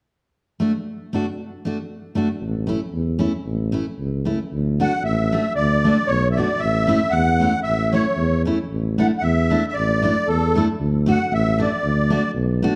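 Alpine folk dance-band music in D major, bouncy and jolly, moving at 114 BPM in a lightly swung, gently rubato 2/4 over D, A and Asus4 harmony. A picked, full-bodied steel-string guitar with fresh strings and audible finger squeak opens at 0.6 seconds, a mellow, soft-attacked tuba joins at 2.4 seconds, and a reedy, shimmering musette accordion takes the melody from 4.8 seconds, with all three sitting up front. A moderate recital-hall reverb and a dark production round out this short section cut from a longer piece.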